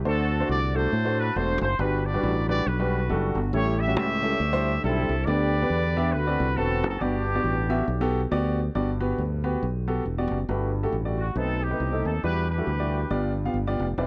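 A dry, close studio sound in the 1970s manner, set in a small room, frames this jubilant yet reverent uptempo gospel excerpt at 138 BPM in swung 4/4 and G major, where a growly fingered electric bass and a natural-sounding baby grand piano with long sustain sit up front under a mellow, vintage horn section playing a loose, jazz-style melody that falls silent at 8.3 seconds and returns at 11.2 seconds over richer chords such as Gmaj9, B7b9 and Em9.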